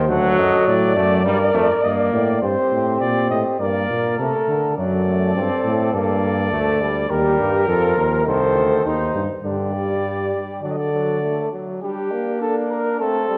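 Lively and elegant, this imitative brass canzona in a classical style sets a dark, lightly vibrato-tinged cornet up front on the melody, with a mellow flugelhorn carrying the second line from a distance, both sounding roomy. A bright, vintage-toned trombone supplies the accompaniment, while a clear, close-miked bass trombone with a soft attack anchors the bass until 11.5 seconds. The ensemble sits in a recital hall's reverberant glow with a warm production, and the opening material returns at 11.8 seconds before this short cut from a longer piece ends.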